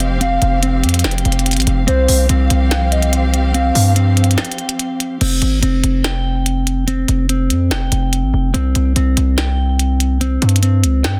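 Melancholic and hard-hitting, this half-time trap excerpt at 144 BPM pairs a distorted, up-front 808-style bass and a minimal click kit with tiny snare and clicky hats against a compressed clean electric guitar arpeggio run through tape echo, lush bowed symphonic strings holding sustained chords until 5.2 seconds, and a hollow, woody clarinet-like synth lead with chorus that plays a brief second line from 0.2 to 3.9 seconds, all moving over Fsus2 and Csus4 harmony before settling on C5, in a dense, heavily limited mix with digital ambience and a short break near 4.4 seconds.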